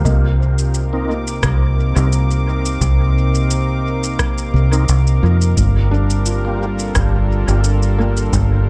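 A lightly swung 16th-note groove of a very quiet, deep analog kick and an echoing electronic shaker and rim click anchors this meditative ambient dub passage, cut from a longer piece, where a foam-muted fingered electric bass sits up front beneath a smooth, detuned sawtooth pad with chorus, dark felt-muted upright piano arpeggios trailing tape echo, a glassy sine texture of drifting overtones, and clean tonewheel organ stabs with key click, chorus vibrato, a stopped rotary speaker and dub echo, all over a move from Cm7 to Gm7 in a dry, echo-heavy mix.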